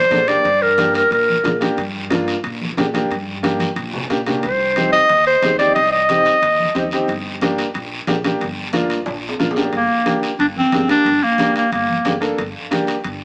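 Heard through a small-speaker sound with a moderate plate reverb, this short cumbia cut from a longer piece drives along passionately at 181 BPM in G minor. An up-front, classical-style clarinet carries the melody in clear bursts at 0.0, 4.4 and 9.8 seconds, while a boxy upright piano with audible action noise comps close by and a dark, thumpy pizzicato upright bass anchors the low end. A raspy guiro scrapes along while ringing metal-shell timbales and bright, distant congas played with soft hands sit in the background, with drum fills at 3.4 and 9.1 seconds.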